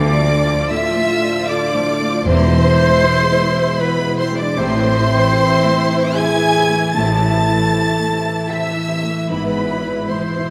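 A lush violin section carries the longing melody high above an airy, mellow flute and a second violin line in this bittersweet, rubato cinematic passage at 77 BPM in 3/4, cut from a longer piece, as a dark piano, rich violas, French horn chords, ringing thumb-plucked harp, and cello and double bass sections fill out the A harmonic minor progression from Dm to E/G# in a wet scoring-stage reverb, with a very quiet, articulate timpani note at 2.3 seconds.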